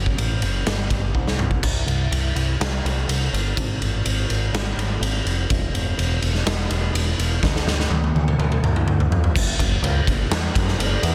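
A raw garage drum kit sits up front in this brooding, cathartic piece of quiet-loud alternative rock, cut from a longer work and played in a straight 4/4. The acoustic kit sounds saturated and gritty, its punchy kick and medium-tuned snare joined by crash, ride and toms in a bright stone room that pumps, while the top end is rolled off. A picked electric bass growls underneath from the very start, dark, round and overdriven, played direct and amped and ranging from E1 to F#2. The drums come in at 0.1 seconds, with a short fill at 1.1 seconds leading into a longer passage and another fill beginning at 7.4 seconds that carries into the closing bars. The sound carries little reverb and is packed tight by a dense, heavily limited modern master.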